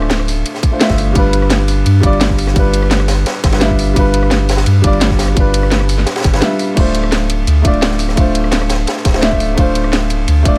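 A dark, mellow grand piano with dub echo opens this melancholic, soulful liquid drum and bass excerpt, sitting up front over a round sine sub bass and a garage kit with a cracking snare, crash, hi-hat and rim click. A gritty, saturated breakbeat kit with a ride cymbal and high-tuned snare, high-pass filtered and rolled off at the top, joins at 0.1 seconds, and a tight electronic kick lands at 0.6 seconds. The chords move from Dm7 to G7 and return to Dm7 at 6.8 seconds, set in a small room with light reverb.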